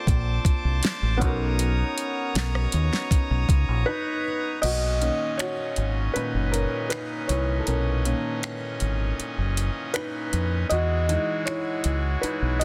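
A straight 4/4 pulse at 79 BPM from an up-front electronic R&B kit (knocking kick, fat snare with soft clipping, metallic hi-hat, finger snaps, rim clicks and crash) anchors this smooth, tender contemporary R&B excerpt in B major, where a round, dark fingered electric bass sits beneath a mellow felt-muted upright piano with audible action noise and quieter, brassy sustained chords from a pipe organ's trumpet stop, moving through maj9 harmonies before a brief break at 3.9 s gives way to a felt piano solo from 4.6 s with the kick muted, set in light reverb within a dense, heavily limited modern master.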